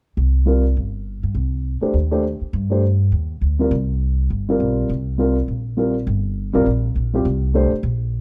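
Jazz in C dorian at a brisk 204 BPM in swung 4/4, this short excerpt carries a searching, spiritual mood under light reverb and a dark production. A woody, thumpy upright bass plays pizzicato up front from 0.2 to 8.2 seconds, while a mellow, worn baby grand piano with audible action noise sits intimately close from 0.5 to 7.7 seconds. The harmony moves from Cm11 to a rootless Ebadd9 at 4.9 seconds.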